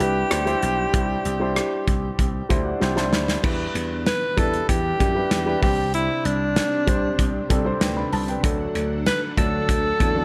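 A bright, up-front alto saxophone carries the melody with pop-style vibrato and a touch of delay in this uplifting, glossy 1980s-style pop excerpt, set in a straight 4/4. A mellow baby grand piano, growly thumbed slap bass and punchy studio drum kit with rim clicks and crash cymbal play throughout, with the piano and drums adding fills just before 3.4 seconds. At that point a very quiet, vintage string-machine cello part enters with sustained sawtooth chords, moving through Em7, Csus2 and D in light reverb.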